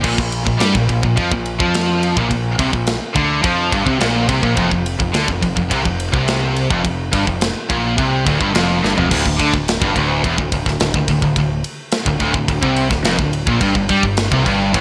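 A tight metal drum kit sits up front from the first moment, its medium-tuned snare, compact kick, crashes, rides and toms carrying a gated reverb and a rolled-off top, while three riffing guitars and a growling picked bass pound away behind it in a relentless, dark slab of heavy metal in straight 4/4. The guitars each bring a different grain: a bright, double-tracked cranked stack with overdrive, a biting high-gain part with heavy distortion, and a murky, sludgy overdriven one, all set back in the mix. Underneath, the overdriven bass mixes a direct and amped signal into a punchy, edgy low end. The opening stretch drives through power chords on Bb and F, then a drum fill at 8.8 seconds leads into a new section at 9.1 seconds, where the harmony falls away into bare riffing before a rootless Fadd9 colours the close at 13.6 seconds. The bright 1980s-style digital production, dressed in light studio reverb, gives this fragment of a longer piece a polished, punchy finish.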